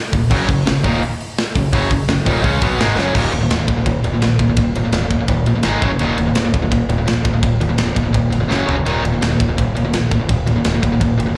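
A bright, overdriven electric guitar riff leads this relentless, dark heavy metal excerpt in Eb minor at 168 BPM, backed by a second, compressed distorted guitar sitting in the background and a punchy, growling fingered bass with its own overdrive. A tight, gritty metal drum kit with bright cymbals and a medium-tuned snare sits up front, marking the shift into the second section with a fill at 3.0 seconds and adding another around 8.5 seconds as the chords move through Eb5, Ab5 and Gb5. The whole band comes across as a live club gig heard through the venue's PA, with light reverb.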